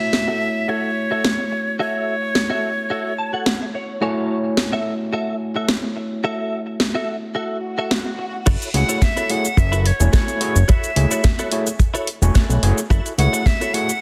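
Cosmic and sensual, this nu-disco excerpt in F# minor moves at 108 BPM with a lightly swung 4/4 feel, opening on an F#m7 chord as a breathy, reedy jazz flute with vibrato carries the melody over a barky, gritty tine electric piano and a twangy, direct-recorded clean guitar riff with ensemble chorus and delay. A cracking, tape-warm house drum kit of snare, hi-hat, shaker and crash drives things from the start, the guitar drops in a short fill, and an electronic swell at 7.6 seconds builds toward the drop. At 8.5 seconds a fat, saturated, detuned analog bass and a dry, dark, tight kick drum arrive up front, with the flute returning over a dense, heavily limited mix and light digital ambience.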